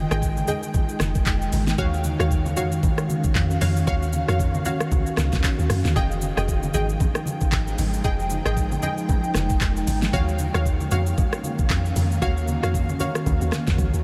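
A deep, round log drum bass anchors this hypnotic, soulful amapiano passage, its dark, percussive FM tone carrying a noise layer with a fast attack that decays between hits, sitting low from F1 to Gb2. At 115 BPM in 4/4 with a 58% sixteenth-note swing, a smooth R&B drum kit arrives at 0.1 seconds and sits up front: electronic and tape-warm, with a knocking kick, fat snare, metallic hats, handclaps, rim clicks, shaker and toms, closing on a drum fill at 13.8 seconds. An ethereal, airy pad of detuned sawtooth and triangle unison voices holds mellow sustained chords with a slow attack and long release, colored by ensemble chorus and its own reverb. Punchy, full-bodied sawtooth chord stabs with a filter pluck and short decay sparkle higher up through chorus and analog delay, while very quiet, low-tuned acoustic congas with a thick skin and soft hands sit in a small room. The harmony moves between Fm9 and Ebm9, and the whole dreamy mix is soaked in a huge ambient reverb, in this section cut from a longer piece.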